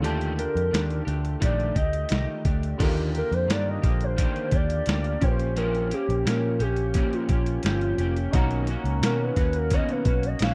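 A laid-back, dreamy slice of indie and bedroom pop at 87 BPM in Eb lydian opens with a gritty, compressed boom bap drum kit, thumpy kick up front, alongside a round, foam-muted picked bass, a twangy, slightly broken-up electric guitar washed in analog chorus and vibrato, and a woody, slightly detuned upright piano murmuring in the background through cassette tape. At 0.4 seconds a warbling, nostalgic synth lead enters with tremolo, lush chorus and tape echo, taking a soft solo from 2.8 seconds as the chords drift from Ebmaj9#11 through Ebmaj7 and Bbm6 to Bmaj9. The whole excerpt sits in a dry, close 1970s-style studio sound touched with digital ambience.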